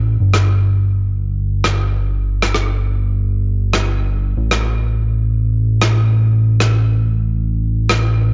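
Dry and gritty, this fragment has a cassette-tape character with a dulled top end and very little reverb. It is a cosmic, groovy slice of nu-disco in 4/4, with a light swing on the sixteenths. A fat analog bass carries the low end from 0.0 to 8.3 seconds, sitting up front with a thick, mellow blend of detuned sawtooth and square waves. Its notes have a fast attack and sustain, shaped by a filter sweep and a moving notch. A rim click joins at 0.3 seconds and runs until 8.0, sounding acoustic and mid-forward, with a rolled-off top, a big-room character and a warm tone, also set up front.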